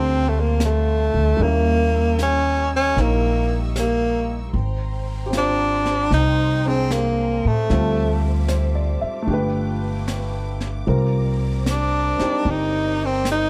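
A dark, intimate production with light reverb frames this wistful jazz ballad excerpt at 76 BPM in G minor, where a clear, subtoned tenor saxophone with vibrato and scooped notes carries the melody up front through plate reverb, over natural concert grand piano with audible action noise, a woody, growly pizzicato upright bass, a smooth bowed string section playing sul tasto in the background, and a brushed drum kit with a high-tuned snare that enters at 0.6 seconds.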